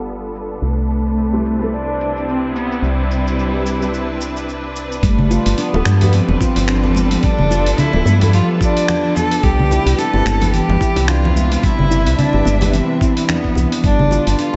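Swung sixteenths in a relaxed 4/4 give this peaceful organic downtempo cut its gentle sway, carried from the start by a gritty, sampler-style soul drum kit of cabasa, congas, finger snaps and hi-hat, filtered and compressed as if re-recorded in a small room. A dark, woody FM bass sits up front with a round, fast-attack, decaying tone, while a felt-muted upright piano murmurs in the background with thick felt and audible action noise, gently pumping under sidechain and trailed by subtle chorus and tape echo. A rich studio string section holds lush bowed chords with vibrato, moving between G9 and Cmaj7, and a distant, bowed cello with vibrato carries the melody up front through delay. A filter sweep runs through the first five seconds, and at 5.0 s a thumpy electronic kick and a ringing handpan playing mellow, meditative arpeggios through tape echo join the texture, followed moments later by very quiet, hard-handed bongos and congas. 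The whole dreamy mix is soaked in lush hall reverb and rolled off at the top, and this passage is taken from a longer piece.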